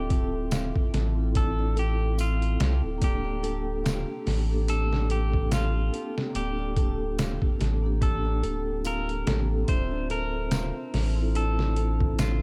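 A dry, close-sounding cut from a longer trip hop piece at 72 BPM in D minor, tuned to A4 = 437 Hz, with a cinematic, melancholic mood and a swung 16th-note feel. A deep, round sine sub bass sits up front beside a gritty, compressed, pitched-down sampler drum kit with a thumpy kick that comes in at 0.1 seconds, while a close acoustic tambourine joins in the background at 0.5 seconds. A bright, twangy clean electric guitar carries the melody through tape echo over a mellow soft-mallet vibraphone accompaniment with harmonic tremolo and 12-bit sampler grit, a fingerpicked flamenco guitar arpeggiating through digital delay with audible finger squeak, and a very quiet, warbling lo-fi pad, all moving from Dm7 to Gmadd9/D and back.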